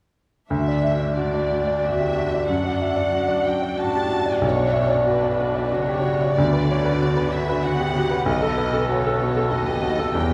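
In a flexible, rubato triple metre, this lyrical, lush passage from a romantic movement for piano and orchestra plays from 0.5 to 10.3 s over a progression moving from D through Bm to B7. A clear, intimate baby grand piano carries the melody up front, its action noise audible, while a dark violin section also sings the melody with soft-attacked, expressive vibrato. In the background, a warm, smooth viola section supplies accompaniment and a cello section plays the bass with vibrato and portamento, all set in the long, wet reverb of a church or concert hall.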